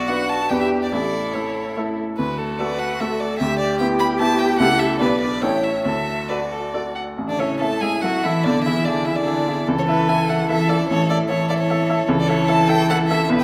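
Lively and cheerful, this fragment of a quick classical-period piano quartet movement moves in three with a rubato feel: a clear violin, close and up front, carries the melody with smooth, even vibrato, while a second violin and a cello, both rich and distant, bow supporting lines, a bright, brilliant baby grand piano with long sustain plays the accompaniment up front, and a wet recital hall reverb surrounds the ensemble as the music enters a new section at 7.2 s.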